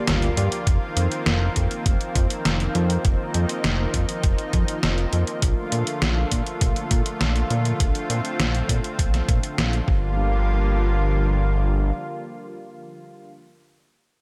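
This short synthwave excerpt sounds dry, with little reverb, and its mood is cinematic and nostalgic at 101 BPM in a straight 4/4 in G minor. A lush, airy unison pad holds sustained chords from the start to 13.3 seconds, its detuned sawtooth and square layers brightened by a noise layer and chorus, and it pumps against the sidechain. A mellow synth brass, round and dark in the background, gives a brief stab only in the opening 0.6 seconds, treated with chorus, tremolo and digital delay. Up front, a fat analog bass with a saturated, detuned sawtooth tone and a filter pluck carries a filter sweep across the first section while also pumping with the sidechain. The rhythm comes from a thumpy electronic kick drum, re-recorded in a small room, and a detuned 8-bit digital drum machine with hi-hat, a medium-tuned snare and toms under gated reverb, both dropping out around 10 seconds. The harmony moves from Gm7 through F7sus4 and Bbmaj7 before returning to Gm7 as a brief second section begins at 10.2 seconds.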